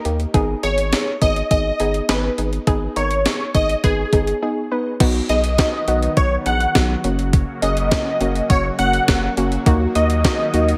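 Nocturnal and melancholic, this synth-pop excerpt at 103 BPM in G# harmonic minor sets a punchy, funky polysynth comp carrying the melody with chorus and delay over a soft round pluck, a deep square-and-sine analog bass and an up-front gated 80s digital drum machine with a thumpy kick and overdriven gated-reverb snare, pausing for a break at 4.4 seconds before a lush, detuned unison pad with chorus and phaser enters at 5.0 seconds as the chords move from B through F# to D#m in a light digital ambience.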